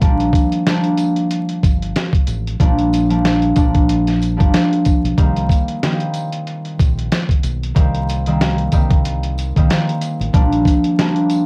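A fingerpicked concert harp, a deep dub electric bass and a dusty, sampler-style drum kit open this dark, tough boom-bap hip-hop fragment together, cut from a longer piece with a lazy swung feel. The harp sits up front, mellow and ringing, carrying the accompaniment through a Gm7 to Cm7 and back to Gm7 progression, its tone coloured by cassette tape. Beneath it, the fingered bass is round, punchy and shadowy, thickened by transformer saturation, and it drops out at 10.6 seconds. The compressed drums are the loudest element: a thumpy kick, a fat snare and hi-hat that sound gritty and tape-warm, re-recorded in a small room. A jingly acoustic tambourine joins at 0.3 seconds, tucked close but far back in the mix. The whole track is dry, with the homespun feel of a cassette home recording dusted with vinyl crackle.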